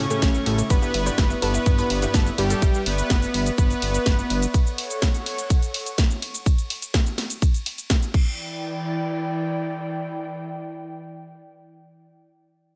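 Driving yet emotional, this progressive house passage is cut from a longer piece and opens straight into a drop that runs to 8.4 seconds. A punchy, up-front electronic kick anchors the groove alongside a house drum kit with a cracking snare, crash, hi-hat, ride and shaker, its tape-warm sound re-recorded in a large room, while a fat, detuned sawtooth bass pumps against the kick. A smooth, full-bodied supersaw carries the melody with dub echo, shadowed by a very quiet, pure FM bell on a second line, and in the background a round analog pluck spins arpeggios through a filter sweep and moving notch as a deep, nasal chord stab with a sub octave decays under chorus and echo. Beneath it all an airy, breathy pad sustains the chords with a slow attack and long release, and a glassy texture of drifting overtones hovers faintly on top. The drums stop at 8.2 seconds, leaving the mellow pad to linger alone until 12.1 seconds in a digital ambience.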